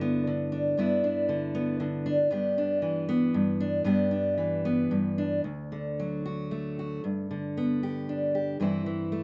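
In a lilting 3/4 at around 116 BPM, this folk piece moves with a loose, rubato feel that lets the phrasing breathe. A single fingerpicked steel-string acoustic guitar carries the whole passage, ranging from D2 up to G4, with a warm, concert-grade tone and audible finger squeak that keeps the playing intimate and human. The harmony opens on a G6 chord, shifts to D at 5.5 seconds, returns to G and closes on C over a G bass, giving the music a pastoral, quietly hopeful character. Close, detailed microphones place the guitar up front, while moderate studio reverb adds a gentle sense of space around each note. Tuned to A4 = 438 Hz and cut from a longer piece, the passage runs just over nine seconds.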